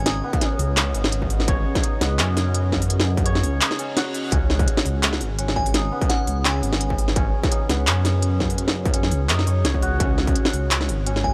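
Lightly reverberant and dark, this tense, cinematic excerpt of half-time drum and bass sets a hammered, shimmering santur's arpeggios with tape echo over a moody, chorused ambient pad that pumps against the beat in the background. Up front, a rumbling detuned saw bass sits beside an industrial drum kit of clanging snare, smooth hats and handclaps, while a distorted electronic kick enters at 0.3 seconds. A glassy, warbling synth bell with chorus and tape echo adds brief melodic touches, and a faint reverse cymbal rises from 3.8 seconds.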